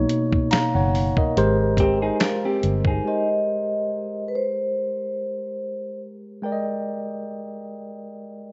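Soulful and relaxed, this neo-soul R&B fragment, cut from a longer piece, moves with a gently swung sixteenth-note feel over lush Bmaj9 and Abmaj9 chords. A clean tine electric piano sits up front, sounding through its built-in speakers, and carries the accompaniment from start to finish. Beneath it, a dark, round, foam-muted fingered electric bass and a gritty, compressed sampler-style drum kit with finger snaps, hi-hat, a thumpy kick and a medium-tuned snare ground the groove until both stop at 3.0 seconds. A dark, hollow-bodied semi-hollow electric guitar enters at 1.8 seconds with a brief second line touched by slapback echo, and at 3.1 seconds a mellow, ringing vibraphone with soft mallets and slow motor vibrato takes the melody, close-miked and full, with its own slapback echo. The rough home-demo mix has little reverb and a muffled top end.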